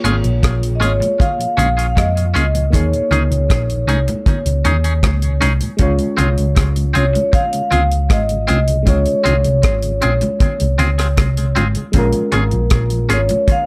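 This short cut from a lovers rock reggae tune moves at an unhurried 78 BPM in 4/4 with a longing, bittersweet mood, opening on Bbm7 as the band comes in together. Up front, a deep reggae drum kit keeps hi-hat, a tight dry kick and rim click, while a dark, round hollow-body short-scale bass sits beside it, picked and amped. Around them, an FM electric piano with a fast, decaying attack and a faint noise layer plays accompaniment through tape echo, and a soft, flute-like tonewheel organ with key click, chorus vibrato and a stopped rotary speaker hangs in the background. A bright, twangy electric guitar adds clean, compressed stabs shimmering with tremolo and tape echo, and very quiet congas, struck with hard hands, ring out in a live room. At 0.8 seconds a vibraphone played with soft mallets enters with the melody, metallic and airy with a slow motor vibrato and its own tape echo, floating over a progression that drifts through Eb7sus4 and Dbmaj7 before returning to Bbm7. 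Light reverb gives the whole a gentle sense of space.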